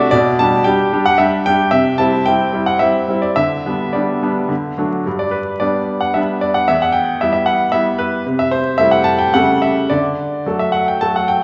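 A vinyl-crackled recording, soaked in the wet reverb of a recital hall and dulled at the top end, carries an elegant, playful classical-period sonatina in triple metre, played by a solo baby grand piano that sounds brilliant, intimate and up front, with its action noise audible, moving through two sections across this 11.4-second cut from a longer piece.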